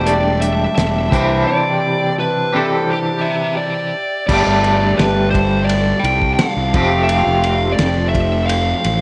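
A hazy, lo-fi small-room sound with light reverb frames this trippy psychedelic rock excerpt at 85 BPM, where a fuzz-soaked lead guitar carries the melody with slapback echo up front. A bright, twangy, double-tracked electric guitar at the edge of break-up plays a riff through tremolo, while a round, punchy fuzz bass drives the low end and a very quiet, mellow combo organ with light vibrato holds sustained chords. A cloth-damped drum kit enters at 0.1 seconds with a fat snare, tight kick and dark, muffled cymbals, as the chords move from Gsus2 to Cadd9, then return to Gsus2 in a second section beginning at 4.3 seconds before shifting to Fadd9.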